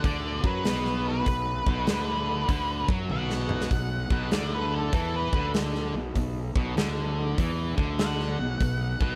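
A dark, fuzzed-out lead guitar with an octave-fuzz edge and a slapback echo carries the melody in this short, raunchy cut from a longer blues rock and southern rock piece, moving at 98 BPM in 4/4 with a 65% swing on the eighth notes. Beneath it, a sludgy, double-tracked distorted guitar sits up front with an overdriven riff in a low register, opening on a B5 chord. A growly, fuzz-laden fingered electric bass, also up front and overdriven, adds weight in the low end for a driving, heavy feel. A huge arena drum kit of hi-hat, kick, snare and toms pumps in a hall-like room, with a punchy kick and medium-tuned snare, and breaks into a fill from 3.1 to 3.7 seconds. The overall sound is dry and close, with little reverb, and the passage runs about 9.2 seconds.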